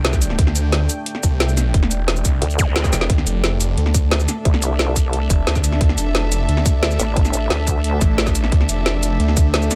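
A dry, close-sounding excerpt of dark, futuristic technical drum and bass, driven from the start by an aggressive drop where a snarling, detuned sawtooth bass growls up front over a tight, layered electronic kick, a woody snare with metallic hats and shaker, and a deep, moody ambient pad pumping beneath with chorus and its own reverb. A nasal, resonant vowel-sweep wobble bass joins at 2.4 seconds, an electronic zap flickers past, and a drum fill at 2.9 seconds leads into a second drop. Here a dark chamber string section, bowed sul tasto with light vibrato and a smooth, intimate top, enters at 3.1 seconds and pumps softly behind the bass.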